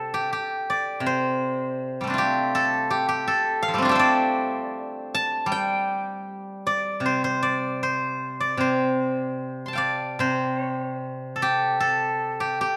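The rhythm moves freely in rubato, loosely anchored in 4/4 at roughly 74-83 BPM, so the pulse breathes rather than marches. This is a serene, pastoral passage of Chinese traditional music for solo plucked strings, set in a G shang mode and tuned slightly low at A4 = 439 Hz. A single acoustic steel-string zither, played with fingerpicks, carries everything for the full 12.8 seconds, ranging from C3 up to C6. Its tone is bright and silvery, with notes that ring on, and it sits up front in the mix. A moderate concert hall reverb lends the instrument a spacious, gentle halo, and the clip is taken from a longer piece.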